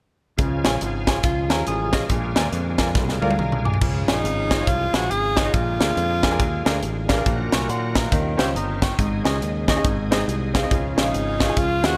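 A swung eighth-note groove at 139 BPM in 4/4 drives this soulful, uplifting uptempo gospel excerpt in Db major. The crisp fusion drum kit sits up front, with a high-tuned snare, tight kick, hi-hat, crash and toms, and it caps the opening passage with a fill at 3.0 seconds. Underneath, a fingered electric bass adds growly low end. A brilliant grand piano carries the accompaniment, while a tonewheel organ holds shouting, lightly overdriven chords in the background, colored by chorus vibrato and a slow rotary speaker. A clean, picked electric guitar adds a brief compressed second line early on. A breathy, edgy tenor saxophone takes the melody close-miked with tape echo from 4.1 seconds, then returns near the close. The harmony moves between Db and Bb7 before passing through Eb13 and an Absus4 that resolves to Ab and home to Db, set in light reverb and studio ambience.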